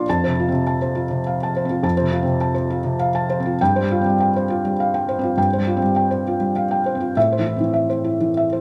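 In a 3/4 metre at 101 BPM, the rubato phrasing lets the beat breathe and stretch freely. This passage of neoclassical minimalist piano sits in F major and feels tender and hopeful. A solo felt-muted upright piano carries everything, ranging from F2 up to A5, with a mellow, hushed tone and the audible action noise of its keys and hammers giving it an intimate, close-up presence. The harmony moves from F at 0.1 seconds to Csus4/G at 3.6 seconds and then settles on Am at 7.2 seconds, shading the brightness with a touch of wistfulness. Light reverb adds a natural sense of space around the up-front piano in this brief excerpt from a longer work.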